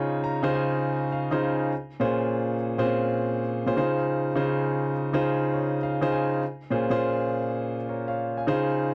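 Slick and bouncy, this brief R&B clip in Bb minor at 102 BPM rides a swung 16th-note feel on a solo concert grand piano that sounds intimate, polished and up front, with deep bass, long sustain and audible action noise. It moves between Dbmaj7 and Bbm7 and adds fills at the opening and around 5.2 seconds, set in a dry, close 1970s-style studio sound with light reverb.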